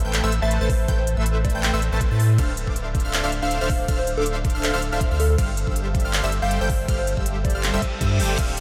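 Lush and emotional, this short future bass excerpt at 160 BPM in a half-time, lightly swung 4/4 pairs a fat, detuned sawtooth polysynth riff and a deep, thick sub bass with a knocking layered kick and crisp pop hats, handclaps and crash, while a punchy unison pluck arpeggiates high in the background through phaser and delay, a round, warbling FM lead sings softly from 0.4 seconds, and a reverse cymbal at 7.8 seconds closes the dreamy, reverb-soaked pass over Am7, Dm7 and G7sus4.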